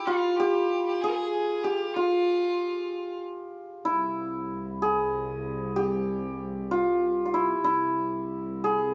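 A live-in-one-room recording with moderate studio reverb captures a stately, festive Persian modal ensemble piece in a straight 6/8, cut from a longer work, where an up-front, shimmering hammered santur carries the melody throughout, a bright, airy-bowed violin adds a second line with light vibrato until 3.2 s, and from 3.8 s a dark, reedy cello section with gut-string tone sustains a low drone beneath the shift into dastgah homayun.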